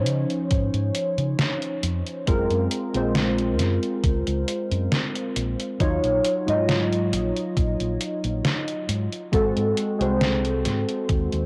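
Woozy, dreamy vaporwave where warbling, detuned lo-fi synth keys with lush chorus, cassette tape and tape echo drift up front over lush ninth chords, carried by a round, punchy fingered electric bass with tube saturation, a thumpy electronic kick, and a detuned 8-bit drum machine's hi-hat and snare, all wrapped in spring reverb on a home cassette recording across this brief excerpt.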